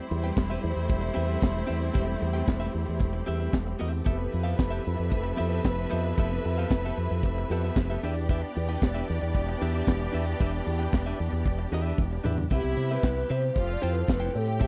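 A straight 4/4 groove at 114 BPM drives this sultry disco excerpt in A minor. An up-front modern drum kit with a tight kick, high-tuned snare, hi-hat, toms and handclaps joins a fingered electric bass through an envelope filter beneath a clean, compressed, picked electric guitar and two distant, lush bowed string sections, one rich and smooth on a second line and one clear and focused holding sustained chords over Am9/E, Fmaj9#11 and Em7. A drum fill at 12.0 seconds then ushers in a breathy wooden-headed alto flute carrying the melody from 12.5 seconds, all in a dry, close 1970s-style studio sound.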